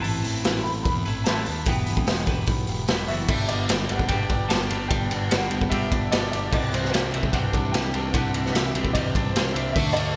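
Carefree and upbeat, this indie rock excerpt moves at a brisk 148 BPM in a straight 4/4 and sits in G major. A clear, woody upright piano carries the melody between C5 and B5, colored by an ensemble chorus and delay. Two twangy electric guitars play riffs from the background: one bright, picked and compressed with a lush chorus, the other fingered and scooped with a subtle chorus. A fuzz-laden picked electric bass adds overdriven grit underneath, while a raw garage drum kit sits up front with a punchy kick, a medium-tuned snare, hi-hat, ride and crash, sounding saturated and gritty with a rolled-off top and gated reverb in a pumping small room. The chords shift from Amadd9 and Emadd9 to G at 3.3 seconds and Cadd9 at 6.5 seconds, all bathed in a lush hall reverb and a bright 1980s-style digital production.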